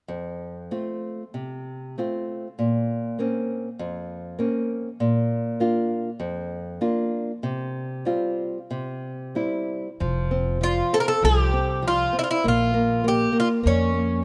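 Nostalgic and tender, this short excerpt from a longer fado-style ballad in F major moves at 98 BPM in 4/4 with a rubato feel, opening on fingerpicked nylon-string guitar alone, small and close, through chords from F to B-flat minor add nine, B-flat, C suspended fourth and C. At 10.0 seconds a woody, thumpy pizzicato upright bass with gut strings enters in the low register, and at 10.6 seconds an Irish bouzouki takes the melody, its picked double strings metallic and up front over F5 and B-flat minor chords. The close, detailed recording adds light reverb, keeping each acoustic instrument intimate and present.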